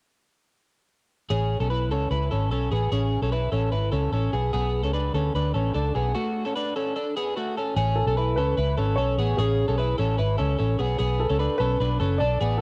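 A home cassette recording with light small-room reverb carries this bright, nostalgic indie pop excerpt in A major at 148 BPM, where a clean, compressed twelve-string electric guitar plays arpeggios over a dark, round, foam-muted fingered electric bass from 1.3 seconds, moving between Amaj7 and Bm7 through a break at 6.1 seconds, before an intimate, woody upright piano with audible action noise takes the melody from 8.0 seconds.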